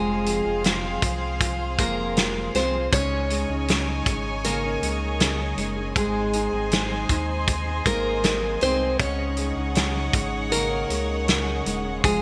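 A full-bodied nylon-string guitar carries the melody in this heartfelt pop ballad excerpt, fingerpicked with a deep classical tone and touched by digital delay. Set at 79 BPM in a straight 4/4 in Db major, the music moves through Fm, Dbsus2, Ab and back to Dbsus2, with an emotional mood. A close, intimate violin section adds a second line with light vibrato and a sul tasto softness. Above it, a dark, veiled string section played con sordino holds sustained chords, while a felt-muted upright piano sits mellow in the background and a very quiet fingerpicked steel-string acoustic guitar with fresh strings ripples through arpeggios. A deep sine sub bass with octave anchors the low end, and a loose indie drum kit enters at 0.3 seconds, up front with a punchy kick, a medium-tuned snare, hi-hat and gated reverb. The whole mix sits in a lush hall reverb with a bright 1980s-style digital production sheen.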